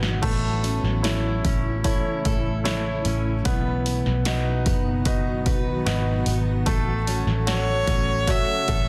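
An emotional, tender pop ballad fragment opens on a drum fill from a punchy analog drum machine, up front and re-recorded in a small room, while a dark, round, foam-muted electric bass, a clear, polished baby grand piano, a picked steel-string acoustic guitar with delay and audible finger squeak, and a blurred, detuned granular cloud pad in the background move through A, B and F#m/A. At 7.5 seconds a single nasal, boxy violin enters up front with a smooth vibrato melody. A concert hall reverb surrounds the parts, and the master is dense and heavily limited.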